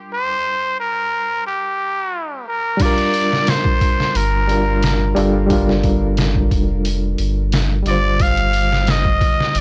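A straight-muted trumpet carries the melody in this hypnotic, melancholic trip hop excerpt. Its nasal, raspy jazz-style tone has light vibrato and is trailed by tape echo. Beneath it, an overdriven reed electric piano plays the accompaniment through a combo amp, its reedy sound shimmering with fast tremolo and harmonic tremolo, while a filter sweep colors it over a Gm7 chord in the opening bars. At 2.8 seconds a sampler-style drum kit enters up front, compressed and pitched down, with a thumpy kick, a medium-tuned snare, hi-hat and crash cymbal. A round sine sub bass joins at 4.2 seconds, deep and sustained beneath the 89 BPM groove in G minor. The recording has a dry, gritty hardware character, with transformer saturation, cassette tape color and a digital ambience.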